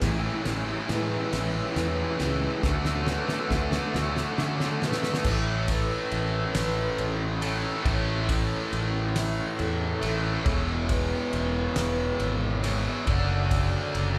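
Cinematic and hopeful, this slow post-rock passage in 6/8 at 46 BPM, in A major, is cut from a longer piece and played live by a band in one large, moderately reverberant room. A bright, scooped, distorted electric guitar riff sits up front over a growly, fuzz-driven fingered bass and a loose indie drum kit with a fat snare, punchy kick and dark crash and ride cymbals. A hollow-bodied overdriven semi-hollow guitar riff and a very quiet clean guitar arpeggio both drop out at 5.3 s after a build-up and drum fill, while a reedy, breathing harmonium and a mellow, ringing soft-mallet vibraphone with fast motor vibrato hold the background as the chords move from Amaj7 through Aadd9 and E6 to D/F#.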